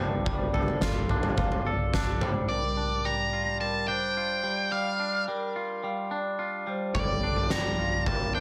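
A wet, spacious reverb frames this brooding, cinematic post-rock excerpt, where a twangy, compressed electric guitar with spring reverb and delay picks arpeggios beside a metallic, ringing vibraphone struck with hard mallets. A very quiet, deep sawtooth pad, a bright fingered bass in the background and an oversized, low-tuned drum kit with a fat snare and punchy, saturated kick drop out just before 2.5 seconds and return at 6.9 seconds. From 2.5 seconds, a dark, distorted octave-fuzz lead guitar with delay carries the melody up front to the end.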